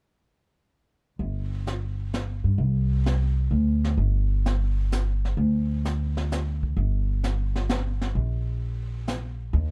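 A plucked upright bass and a brushed jazz drum kit enter together at 1.2 seconds, setting up a cool, swinging small-group jazz groove in 3/4 at 130 BPM with a firm swing on the eighth notes. The bass sits up front, its steel strings giving a woody, dark voice that moves through the low register between G1 and G2. Behind it, the acoustic kit plays from a studio room with brushes on a high-tuned snare, alongside hi-hat and a boomy kick, and its sound is smooth and set well back from the bass. The production is dry and dark, keeping the duo intimate and close. An opening section gives way to a second passage at 6.8 seconds, and both parts carry on until 9.7 seconds in this short cut from a longer piece.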